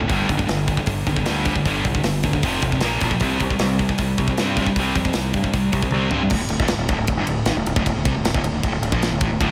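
A dark, sludgy guitar sits up front, grinding out an overdriven, picked riff from start to finish in this aggressive, epic heavy metal excerpt. Alongside it, a high-gain guitar adds a brighter, more distorted riff of its own, with a short slapback echo on both guitars; this second guitar drops out at 6.3 seconds and returns only for a brief moment near the end. Underneath, a growling, overdriven fingered bass gives the low end an edge, while a tight, acoustic metal kit drives a straight 4/4 with a tight kick, a medium-tuned snare and bright cymbals. The drums play a fill from 5.9 seconds that leads into a new section, where the chords settle on D5 after moving through G5, F5, Bb5 and C5. A lush hall reverb and a touch of small-room ambience give the mix a big arena sound.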